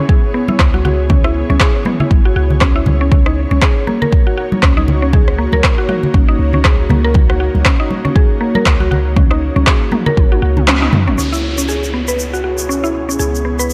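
A swung afro house groove at 119 BPM in C# dorian sets a deep, up-front electronic kick and close, bright congas under an overdriven deep house kit of handclaps, rim clicks and toms, with a boomy 808-style bass entering at 0.6 seconds, all moving between C#m7 and D#m7 in a hypnotic, warm mood. Above it, a woody, round mallet-like pluck spins arpeggios through chorus, tape coloring and dub echo, while an ethereal, airy pad holds sustained chords with ensemble chorus, tremolo and sidechain pumping. During a drum fill, the kick drops out with a band accent at 10.7 seconds, and from 11.2 seconds a grainy tube shaker and an electronic downlifter join the pad, pluck and bass as this cut from a longer piece returns to C#m7.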